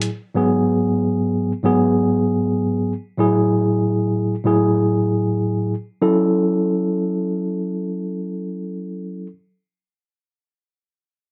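A swung sixteenth-note hip hop groove in 4/4 sets a moody, dark tone for this short cut from a longer piece, where a mellow, clean tine electric piano sits up front as the sole accompaniment, colored by cassette tape and high- and low-pass filtering, moving from G#m7 to F#m7/A before settling on F#m7 at 6.0 s in a moderate studio room.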